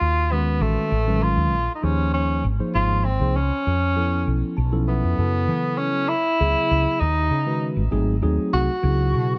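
A tenor saxophone carries the melody in this nocturnal, funky electric jazz fusion piece, its tone warm and vintage with a soft attack and light vibrato, sitting up front in a solo jazz style. Beneath it, a woody fretless electric bass sounds dark, growly and round, with an amped, hollow-body character and an ensemble chorus effect, placed prominently in the mix. A clean, bright tine electric piano with a phaser enters at 0.3 seconds to supply accompaniment and plays a fill from 4.3 seconds. The music moves in a slow 6/8 at 66 beats per minute with a straight feel, passing through rich extended chords such as B13 and Db7alt before settling into F# minor at 5.2 seconds. From there the harmony runs through F#m9, D#m7b5 and G#7b9 to C#m7, all within a light studio reverb in this excerpt cut from a longer piece.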